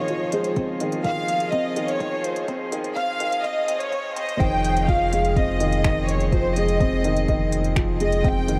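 A straight 4/4 pulse at 125 BPM drives this intimate, melancholic piano and strings electronica clip in F minor, cut from a longer piece, where a close, up-front violin section sings a smooth vibrato melody with digital delay over a distant, reedy string quartet holding sidechain-pumped chords, a woody, slightly detuned upright piano riff, and tape-warm electronic finger snaps and hi-hat. A deep electronic kick enters at 0.6 seconds, and a filter sweep builds until the drop at 4.4 seconds, when a round, evolving analog bass arrives on a low F with sidechain pumping. A huge ambient reverb with a 4.3-second tail gives the whole mix its spacious haze.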